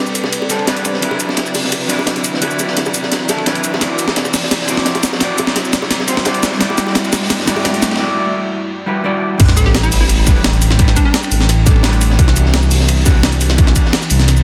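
Rolling breakbeats from two kits, a gritty sampler-style one up front and a crunchy, dark small-room one, drive this dreamy liquid drum and bass passage, with tight bongos in the background, a clean hollow-body jazz guitar, an ethereal airy pad and a background riser and sub drop through the build, until the drop lands at 9.4 seconds with a punchy electronic kick, a deep, rumbling detuned saw bass up front and a brief bouncy square pluck melody, set in a lush hall reverb.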